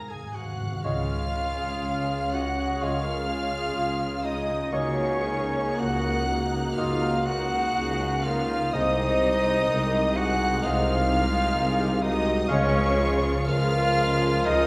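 A soft-malleted timpani fill with a round tone opens this serene, lyrical classical excerpt in Db major. Beneath it, lush violins already carry the melody over a second violin line, a pure, metallic flute, a quiet viola accompaniment, bright ringing harp arpeggios, brief trumpet stabs and a focused cello bass. At 0.8 seconds the timpani stops, and a distant oboe, a clear bassoon and mellow trombone chords join, with tuba and a double bass section following a moment later, all in a slow, rubato 4/4 at roughly 54-65 BPM. Dark, roomy French horns add sustained chords from 2.8 seconds, filling out a gently moving harmony that settles from Db through Ab/C and back to Db. The bowed strings sing with vibrato, while many of the winds and brass sit in the background, bathed in the generous reverb of a recital hall.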